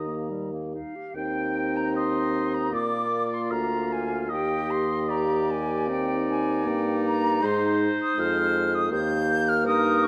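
An airy, distant concert flute sings a tongued, expressive melody with vibrato over a warm oboe second line, a soft-attacked French horn with light vibrato, a clear clarinet in the background and a dark, up-front bassoon bass, in this melancholic, yearning fragment of a slow romantic wind quintet movement in Eb major, played with rubato at 68-82 BPM in 4/4, moving through Eb, Bb and Ab harmonies and set in a moderate scoring-stage reverb.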